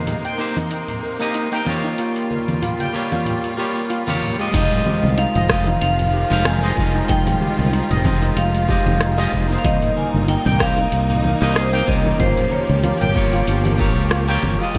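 A lightly swung groove from a smooth R&B drum kit with metallic hats, plus distant, ringing congas, carries this relaxed sunset chillout piece, cut from a longer work. A slightly broken-up, twangy electric guitar and a shimmering steel pan, both with digital delay, play over lush bowed symphonic strings, while a very quiet, glassy harmonics texture drifts until 4.6 seconds. At 4.5 seconds a punchy, layered electronic kick and a growly, up-front fretless bass arrive, and a vibraphone struck with hard mallets, its fast motor vibrato ringing through digital delay, carries the melody until 13.4 seconds, all polished by a moderate hall reverb and bright 1980s-style digital production.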